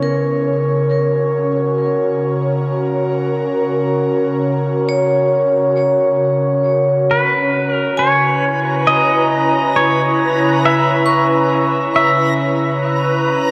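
A slow, straight 4/4 pulse at 68 BPM underlies this serene, spacious ambient passage in C# dorian, tuned to A4 = 442 Hz and cut from a longer piece. From the start, an airy, breathy pad sits up front with sustained chords through chorus and shimmer reverb, while a vibraphone struck with hard mallets, motor off, rings out metallic arpeggios wrapped in shimmer reverb and diffuse ambient delay. The harmony rests on F#/C# before moving to C#m7 at 7.1 seconds, where a clean, compressed electric pedal steel guitar enters up front with a fingerpicked slide melody and volume swells, carried on the same shimmer and delay. At 8.2 seconds a reversed, dreamy swelling texture with a granular grain joins in the span from B4 to A#5, bathed in its own reverb and shimmer. The whole passage sits in a deep cathedral reverb with a 6.1-second decay, giving the sound a vast, floating quality.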